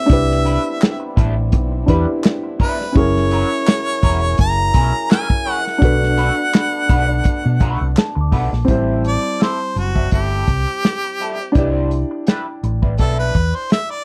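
A clear, close-miked harmonica with scooped notes and slapback echo opens this bittersweet, cinematic 1970s-style soul excerpt over a dark baby grand piano and a smooth-topped French horn section. A round, hollow-body bass and a punchy soul drum kit with hi-hat, kick and snare join almost at once, while a slightly broken-up electric guitar riff with wah and chorus, background handclaps and a bell-like celesta fill out the swung groove. The horns drop away at 8.7 seconds as the harmonica takes a jazz-style solo, all captured in a dry, intimate studio sound.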